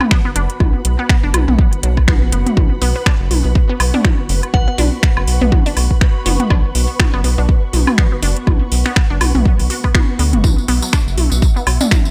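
A punchy, up-front electronic kick drives this minimal techno fragment at 122 BPM in 4/4, with a swung 16th-note feel and a quirky, hypnotic mood. A layered house kit adds finger snaps and metallic hi-hats, while electronic toms and woodblock, set in a larger room, trail a dub echo behind them. The rubbery square bass bounces hollow and dark beneath a squelchy, warbling blip pluck riff that runs through phaser and digital delay, both pumping against the kick over a B5 harmony. Behind them sit an ethereal, airy pad with ensemble chorus and phaser, and a flickering, grainy texture in the background. A crystalline synth bell rings out briefly at 4.5 seconds with chorus and dub echo, and a jingly tambourine joins at 10.4 seconds, all held in a digital ambience.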